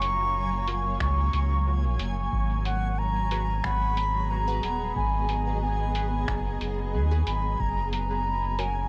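An airy wooden flute with vibrato carries the melody up front in this meditative, hazy ambient dub fragment at 91 BPM in G# dorian, its line coloured by cassette tape and dub echo. Beneath it a round sine sub bass sits forward, a blurred, detuned granular cloud pad holds sustained chords moving from F#maj7 to G#m7, and a reversed, dreamy swelling texture lingers in the background. A muffled, pitched-down sampler-style kit of finger snaps and hi-hat carries dub echo, a dry electronic kick plays from 1.0 s to 7.7 s, and from 0.7 s a muted, wave-folded dub chord stab with phaser sits low behind, all in a lightly reverberant home cassette recording.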